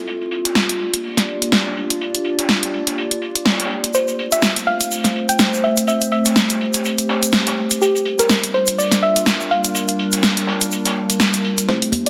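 Relaxed deep house at 124 BPM with a gentle 16th-note swing, built on a warbling, nostalgic pad with chorus and phaser that pumps under sidechain and moves through Bb6 and Fmaj7 beneath a filter sweep, while an up-front, overdriven analog drum machine plays hi-hat and snare over a gritty, rolled-off breakbeat kit. A soft, round pluck melody with chorus and digital delay enters at 3.9 seconds alongside a grainy tube shaker in the background. At 11.7 seconds a drum fill brings in a punchy overdriven kick and a dark, deep chord stab, with close, dry congas following at 11.9 seconds, all wrapped in plate reverb, vinyl crackle and a dense, heavily limited master.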